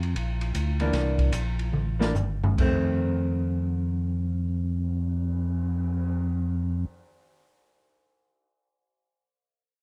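A fat, lightly overdriven tonewheel organ carries the bass line up front, its chorus vibrato, key click and slow rotary speaker colouring a swinging, soulful soul jazz organ trio excerpt that moves from Gm7 and C9 toward F7. An acoustic drum kit with dark cymbals, a medium-tuned snare and a boomy kick plays a fill from 1.7 to 2.6 seconds as the tempo slows, before the kit stops at 6.0 seconds. A clean, picked hollow-body electric guitar with a dark tone enters at 0.8 seconds as accompaniment, all in a close, dry and detailed sound.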